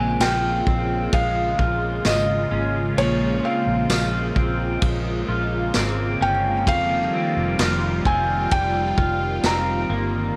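A light reverb gives this short dream pop clip, cut from a longer piece, an ethereal, hazy glow at a slow 65 BPM in straight 4/4, in Bb dorian and tuned to A4 = 439 Hz. A felt-muted upright piano carries the melody between Db5 and Bb5, soft and intimate with audible action noise, its notes trailed by digital delay. Beneath it, a phased analog pad holds sustained chords, swirling and airy with a detuned sawtooth edge, a noise layer, slow attack and long release, thickened by chorus. An electric guitar through a small old amp plays picked arpeggios, twangy and slightly broken-up, treated with analog chorus and digital delay, while a vintage muted fingered bass stays low and round with a foam-muted thump. A vintage drum kit enters at 0.2 s with punchy kick, medium-tuned snare, dark ride cymbal and tambourine, all with a rolled-off top, as the harmony moves from Bbm9 to F9sus4 at 6.7 s.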